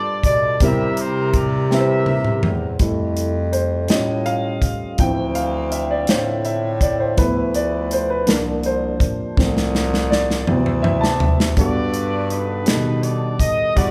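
Slow gospel in 6/8 with a reverent, uplifting mood, this cut from a longer piece opens with a smooth-topped, jazz-style horn section carrying the melody over woody upright piano, a classical-style bass clarinet on the bass line and a polished, airy acoustic drum kit with a tight kick. The piano then takes a solo from 2.8 to 11.6 seconds above very quiet, distant French horn chords with a dark tone and soft attack, and the horns return with the melody at 11.6 seconds, the band playing together in one room with light reverb.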